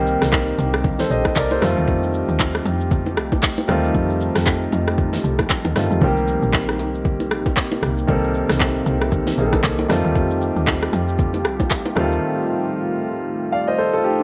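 A soulful, hypnotic amapiano excerpt at 116 BPM in 4/4 opens with an intimate concert grand piano, up front, with audible action noise and deep bass, playing accompaniment over a dark, moody pad that sits in the background with a warbling, detuned, chorused shimmer and its own reverb. A woody log drum bass enters at once, its FM tone punchy and percussive with a fast attack, a noise layer and a mellow decay. At 0.1 s a produced, electronic R&B drum kit joins up front, overdriven and roughened with vintage 12-bit sampler grit, its soft kick and fat snare set among handclaps, rim clicks and shaker on a 16th-note swing. Bright acoustic bongos and congas, played with hard hands in a small room, sit very quiet beneath the kit. The harmony moves between Cm7 and F9, and the drums and log drum bass fall away at 12.2 s, all within a light digital ambience.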